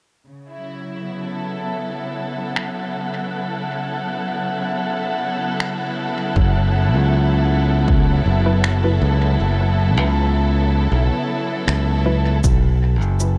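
A lightly reverberant, digital-sounding ambience frames this spacious, hazy ambient dub fragment, cut from a longer piece, as a dark, woody string section bows lush sustained chords with vibrato while an airy, breathy wind-like noise texture hovers in the background and echoing electronic finger snaps and cabasa slip in. At 6.4 seconds the harmony moves from B5 to F#7sus4 as a bright, growly fingered electric bass arrives up front alongside a punchy, overdriven electronic kick. The kick drops out at 9.4 seconds, while a muted, detuned sawtooth chord stab with chorus and dub echo plucks and decays faintly behind.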